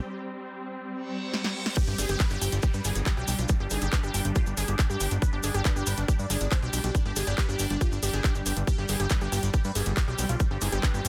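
Psychedelic trance with a psychedelic, intense mood, cut from a longer piece, opening on a short break where a swarming, tense drone of detuned unison tones sustains chords in the background, soaked in its own reverb and pulsing with sidechain pumping. A reverse cymbal and downlifter sweep in at 1.1 seconds, and a big-room dance kit adds a brief fill with punchy snare, handclaps and metallic hats before the drop lands at 1.8 seconds. From there a tight, up-front electronic kick drives the groove under a fat, saturated analog bass built from detuned sawtooth and square waves with a fast filter pluck. Above it, a lush, wave-folded unison pluck riff with ring modulation, cassette tape colour and dub echo sits over a mellow supersaw stab melody that carries a phaser, moving notch, 12-bit sampler grit and dub echo further back. A grainy, bright cabasa adds vintage acoustic texture in the background, and the whole is delivered through a dense, heavily limited modern master with light reverb.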